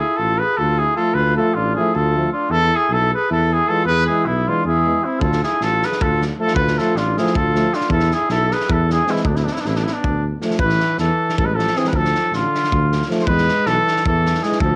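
Balkan brass band folk in a restless, virtuosic 7/8, where a distant, roomy trumpet with light vibrato carries the melody over an alto saxophone second line with vibrato and a close-miked, up-front tuba bass with transformer saturation, while a mellow euphonium and trombone sit in the background as accompaniment, and a gritty, punchy acoustic drum kit of kick and snare with a rolled-off top joins at 5.2 s, the band set in a moderate plate reverb.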